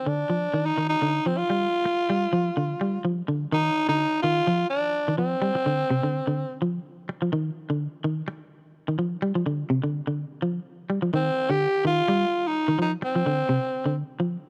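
Joyful and driving, this short cut from a longer afrobeat piece moves in a lightly swung four-beat groove. A growling tenor saxophone carries the melody up front, its raspy, gritty tone topped with a smooth edge and a touch of vibrato in a pop-style solo voice. Beside it, a semi-hollow electric guitar plays bright, clean picked arpeggios in a lower register, sounding from 0.1 to 14.4 seconds. The saxophone drops out at 6.6 seconds, leaving the guitar alone until the horn returns at 11.2 seconds. Suspended and open chords colour the harmony, with a brief unaccompanied-by-chords stretch in the middle, all captured as a dry, close 1970s-style studio recording in a small room.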